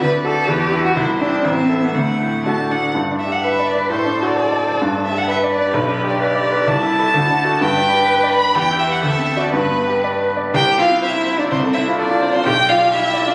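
A warm, vibrato-rich violin carries the graceful melody up front over a rich cello line sung with portamento and a bright, brilliant concert grand with deep bass, in a lively, rubato classical-period piano trio movement in 2/4 heard through the lush wash of a concert hall, as captured on a phone in the room.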